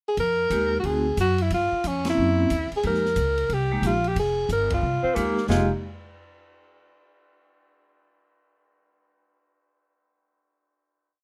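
A warm alto saxophone opens the pickup at 0.1 seconds with vibrato-laden, subtoned hook phrases, and this whole short, smoky small-group swing piece in F minor moves at 180 BPM with a swing feel. A woody, thumpy upright bass walks up front, while a kit with dark cymbals and a boomy kick rides the cymbal and the metallic, ringing vibraphone comps in syncopated rootless voicings, all in light reverb, with band accents hitting at 2.0 and 4.7 seconds. Near the end, at 5.0 seconds, a breathy, whispered tenor saxophone slips in with scooped, intimate answering phrases in the melody's rests before the final chord.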